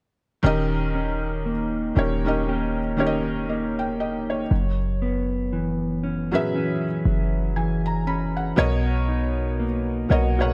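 R&B at a slow 59 BPM with a gentle sixteenth-note swing, this dreamy, romantic excerpt pairs a soft, intimate felt-muted upright piano and a deep, boomy 808-style bass, both up front, with clean, dark electric guitar arpeggios touched by delay, all moving through D#7, F#7sus4 and Bmaj7 in a small room with light reverb.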